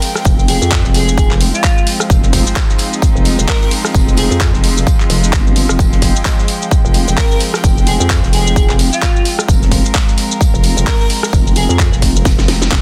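This swaggering, bouncy bass house excerpt in F minor at 130 BPM opens on a clear, earthy string section holding sustained chords over a warbly, nostalgic tape-like pad, both with sidechain pumping, while a garage drum kit with a cracking snare, bright hats, handclaps, rim click and shaker rides a 16th-note swing, backed by a very quiet, dry 70s kit with snare, hi-hat and tambourine. At 0.3 seconds a punchy electronic kick and a nasal, wobbling vowel-sweep bass arrive up front, the bass saturated and dark with chorus, overdrive and sidechain pumping. An airy, dreamy lead with vibrato, chorus and digital delay floats a soft unison line between F4 and Bb4, entering at 0.5 seconds and returning from 7.2 seconds. Underneath, the pad stays in the background, detuned and lo-fi with ring modulation and built-in reverb. A drum fill at 12.3 seconds closes the passage, all sitting in a small room ambience with a dense, heavily limited modern master.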